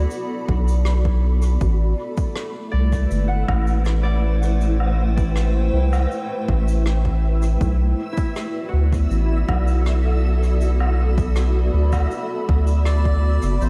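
Deep and hazy, this ambient dub excerpt moves at 80 BPM in a straight 4/4, its harmony drifting from Bm7 to Am9 at 1.6 seconds and back to Bm7 at 7.6 seconds. A round analog bass sits up front from the start, dark and sustained with a fast attack, under a cloudy granular pad whose detuned unison voices blur and evolve through built-in reverb and a subtle chorus. A fingerpicked concert harp rings out arpeggios in the background through analog delay until 11.1 seconds. Cabasa, rim click and woodblock, played with brushes and given a rolled-off top, pass through dub echo alongside a punchy, layered electronic kick. From 3.0 seconds a reversed, swelling texture adds a bright, dreamy shimmer in the background with ensemble chorus, and a reedy, breathy melodica slips in for a brief melody near the end at 12.9 seconds, all set in a small room with light reverb.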